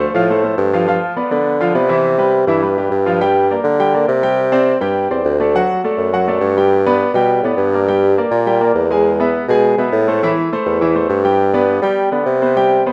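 Salsa at a brisk 206 BPM in a sunny, festive mood, this brief piece cut from a longer work pairs a clear, polished concert grand piano, present and up front with deep bass as it plays accompaniment through chords from rootless Dm7 and G7 to Cmaj7, Gm, E and Am, alongside a mellow bassoon carrying the bass line in a classical style with light vibrato and a smooth top, all within light reverb and small-room ambience in a rough home demo mix.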